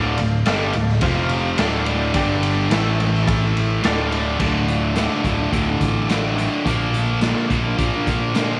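A straight 4/4 groove at 107 BPM drives this brooding, swaggering classic rock excerpt in D minor, where two overdriven guitars, one up front and one cranked stack further back, churn a low riff over amped picked electric bass and a gritty, punchy raw garage drum kit with crash, ride, hi-hat, snare and kick, while a metallic, jangly tack piano comps until 4.3 seconds and a full-bodied picked steel-string acoustic guitar with audible finger squeak takes over at 4.4 seconds, all set in a moderate echo chamber reverb.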